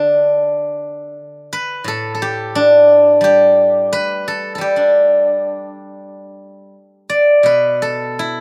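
A solo steel-string zither sounds from the very start, bright and silvery as its fingerpicked strings ring out up front. This short fragment of Chinese traditional plucked-string music runs 8.4 seconds and carries a flowing, pastoral mood. The phrasing moves in a loose two-beat metre with uneven beats and a rubato feel, ranging from A2 up to D5. A slapback echo trails the zither's notes. Recorded outdoors, the sound is dry and close, with little reverb and an absence of room ambience.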